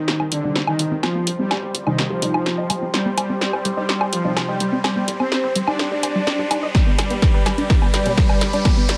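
This cinematic, hypnotic stretch of melodic techno is a build-up cut from a longer piece, and it opens on a dense synth bed. A bold, nasal analog brass lead carries the melody, with chorus, vibrato and analog delay. A smooth unison supersaw line and a moody, sub-octave pad with slow-attack chords and 12-bit sampler grit sit behind it, all pumping with the sidechain. A tight, detuned sequenced arpeggio runs under a filter sweep throughout. A very quiet sawtooth sequencer bass plucks beneath, while muted, evolving dub chord stabs with phaser, moving notch and cassette-tape colour echo through the mix. Up front, an overdriven analog drum machine plays a fill across hi-hat, punchy snare, toms and woodblock, a background riser climbs from 1.8 seconds, and a layered, overdriven kick lands at 6.7 seconds as the harmony moves from C minor to G, all in an echo-heavy mix with moderate spring reverb.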